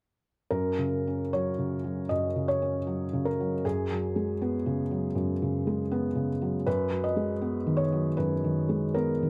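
A felt-muted upright piano plays alone from 0.5 seconds in this brief, tender and hopeful neoclassical minimalist excerpt, moving with rubato at about 78 BPM in F# major over chords of F#, C#7sus4/F# and G#m7/F#, its soft, mellow tone sitting close and up front with the natural, audible noise of its action caught by detailed microphones in a dry, intimate sound.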